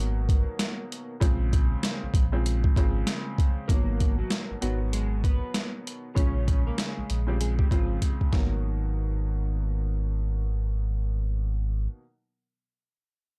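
A swung boom-bap groove from a gritty, compressed sampler-style kit with a thumpy kick and medium-tuned snare sits up front from 0.3 seconds, closing with a fill before dropping out at 8.5 seconds, while a deep sine sub bass with an octave holds the low end in this reflective, moody hip-hop excerpt. A woody, slightly detuned vintage upright piano comps on minor ninth chords through a cassette-tape haze, and from 3.7 seconds a dark, slightly broken-up fingered electric guitar carries the melody through analog chorus and tape echo. The sound is dry and gritty, with transformer saturation coloring the hardware recording.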